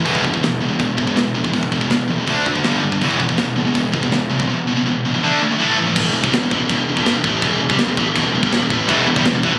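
Heavy and dark, this heavy metal excerpt drives at 163 BPM in E minor: two bright, high-gain electric guitars, one with a scooped tone, pick a power-chord riff moving through E5, D5, G5 and A5 before settling on Em at 6.0 seconds, where the unscooped guitar drops out until 8.9 seconds. Underneath, a fuzzy, growly picked electric bass and a tight metal kit with a gritty, rolled-off top, china and crash cymbals, hi-hat, snare and kick keep the straight 4/4 pulse. The sound is compressed, like a phone capture from inside a club.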